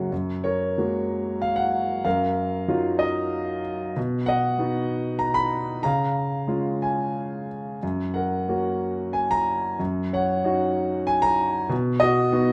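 A 3/4 pulse at 93 BPM moves with uneven beats and rubato, giving this short classical piece for solo piano in F# major a sunny, hopeful lyricism. The concert grand sits up front and intimate, with deep bass, a boxy tone, long sustain and audible action noise, ranging from F#2 to B5 across chords such as F#add9, D#madd9/F#, B and C#. Moderate studio reverb and a dark production colour the sound of this 12.5-second fragment of a longer work.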